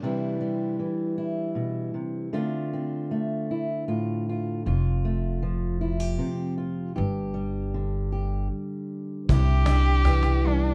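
Peaceful and gentle, this short acoustic folk passage in 3/4 opens on fingerpicked steel-string guitar, up front and warm, moving through Cadd9, Dm7, F and G5, with woody, dark pizzicato upright bass joining at 4.7 seconds. After a stop, a bowed cello takes a brief solo at 9.3 seconds, nasal and boxy with vibrato and portamento, as a snappy cajon enters alongside a soft brush kit with punchy kick and dark ride cymbal sitting in the background. Light reverb gives the whole a dark production.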